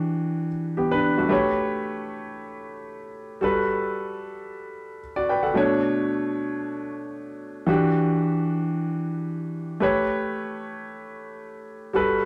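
A studio reverb with a 0.6-second decay gives this live, one-room recording a wet sheen around a clear, intimate grand piano that sits up front, its natural tone carrying audible action noise. In a driving, danceable disco groove at 113 BPM in straight 4/4, the solo piano plays for the full 12.3 seconds, spanning B2 to G5. It moves through lush extended chords: Em9, A9, Gmaj9 and Bm9, then back to Em9 and A9.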